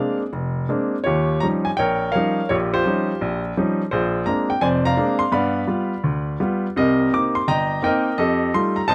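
Solo jazz piano in a relaxed, warm mood, this short passage comes from a longer performance and lasts 8.9 seconds. A baby grand carries everything alone, with a clear, natural tone that sits up front, ranging from deep bass notes to the upper register. The feel is a lilting swing on the eighth notes, loosened by rubato so the time breathes freely. The harmony moves through rich extended chords, from Bb9 and Eb9 to G7 and Cm7 before settling on F9 near the end. Close, detailed microphones capture an intimate sound in which the action noise of the instrument is plainly audible, set in a light reverb.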